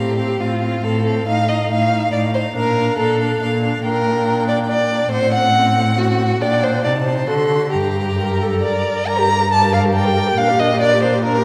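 In a straight triple metre, this quick, dramatic and stormy classical-period string quartet excerpt sets a smooth, even first violin melody over a dark, expressive second violin line that sits up front with portamento, a rich, distant viola accompaniment and a warm, up-front cello bass, all four bowed with vibrato and wrapped in the wet reverb of a concert hall.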